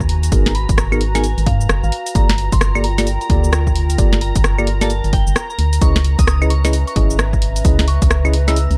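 UK garage in a two-step groove at 131 BPM, this bouncy, moody fragment from a longer piece swings its sixteenths over Abm7, Gm7 and Dbm7 chords, with a hollow, organ-like FM bass sitting up front beside a punchy, tape-warmed electronic kick and an analog drum machine of snare, hi-hat, rim click, cabasa and claves. A mellow tine electric piano plays stabs through tape echo from 0.3 seconds, while a soft, pure synth bell carries the melody in the background with chorus, phaser and delay. Behind them, a smooth detuned sawtooth pad holds sustained chords and a nostalgic, lo-fi tape-like pad adds texture, both with chorus and sidechain pumping, all within a dark, dry production.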